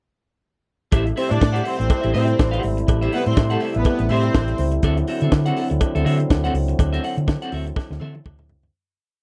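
A glamorous, driving disco groove in which a dry, up-front funk kit with a high-tuned snare pounds a four-on-the-floor beat with open hats on the off-beats, a round, hollow-body fingered bass runs a syncopated line with chromatic approach notes, a twangy clean guitar chops out sixteenth-note figures, a distant French horn section holds dark sustained chords, a cowbell taps quarters in the background, and a smooth symphonic string section plays short riffs from 1.2 to 4.6 seconds before the piece fades out with a drum fill.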